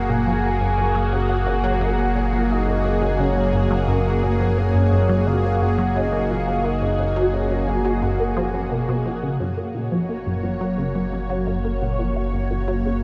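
A fat, detuned analog bass holds a single low F# throughout this expansive, cosmic stretch of ambient, sequencer-driven space music at 87 BPM in F# major. Around it, a lush, bright unison pad sustains thick chords, and a juicy, squelchy blip pluck repeats a resonant riff through phaser, delay and shimmer reverb. A round, dark octave-layered synth lead sings a chorused melody with vibrato until 8.7 seconds, a very quiet bubbling filter texture stops at 9.4 seconds, and the whole dreamy, cassette-tinged mix is soaked in hall reverb.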